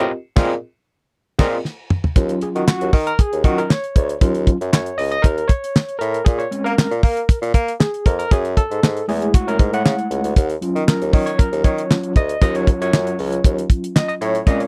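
A dry, close recording in a 1970s studio style carries this danceable, funky stretch of early-eighties boogie funk, cut from a longer piece. The band opens on an accent. A bassoon with a clear, classical tone and light vibrato plays the bass line, while a damped acoustic kit sits up front with a fat snare, tight kick, hi-hat, handclaps, toms and crash cymbal, playing a fill at 1.6 seconds. From 2.2 seconds an overdriven tine electric piano, barky and gritty through a combo amp with medium tremolo, takes a solo over chords such as Ebm9, Bbm9 and Gbm9.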